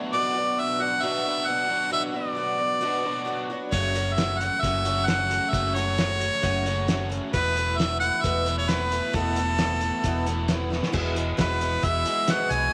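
Folk rock with a heartland rock drive, this short, jangly cut from a longer piece moves at 133 BPM in a straight 4/4 with a nostalgic mood. A picked twelve-string acoustic guitar with a shimmering, octave-doubled, boxy tone and a crunchy, double-tracked overdriven electric guitar riff sound together from the start, while an up-front harmonica carries the melody with light vibrato and scooped notes. At 3.7 seconds a round, dark hollow-body bass and a cloth-damped, thuddy drum kit enter, the kit muffled and gritty with a fat snare, tight kick and dark cymbals. The chords move from Bm through F#m and Esus4, and a drum fill at 10.7 seconds leads into a closing passage on Eadd9 where a clear baby grand piano joins in the background with long sustain. A moderate echo chamber reverb and small room ambience surround the ensemble.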